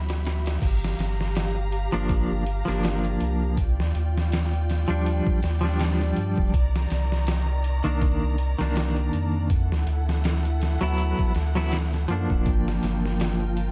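A deep, round sine sub bass sits up front in this brooding, dark trip hop piece, under a bright, clean semi-hollow electric guitar with tremolo that plays accompaniment over chords moving from D69 through Gm7, Ebmaj9 and Cm9. A gritty, pitched-down sampler-style drum kit with a thumpy kick and a medium-tuned snare, high-pass filtered and re-recorded in a large room, comes in at 0.1 seconds with a swung feel, while a lush bowed string section holds sustained chords with vibrato at a lower level. The production is dark and dry, with little reverb and a layer of vinyl crackle.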